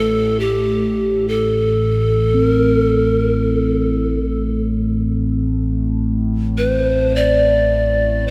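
World meditative music in free time, haunting and meditative, cut from a longer piece and soaked in a lush hall reverb. An airy, hollow pan flute carries the melody up front with a crisp chiff and a diffuse ambient delay, over a detuned sawtooth drone that evolves slowly beneath a warm chorus. At 2.3 seconds a soft bronze singing bowl struck with a felt mallet joins, its metallic ring beating slowly.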